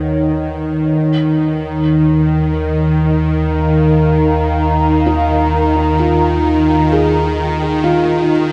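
A warbly, tape-like pad sits up front holding nostalgic sustained chords through a filter sweep, over a deep, ominous rumbling bass drone and a nasal, string-like bowed drone with vibrato, and at 5.1 seconds a thick-felt muted upright piano joins with soft, delayed arpeggios, all washed in huge reverb in this reflective, serene ambient excerpt.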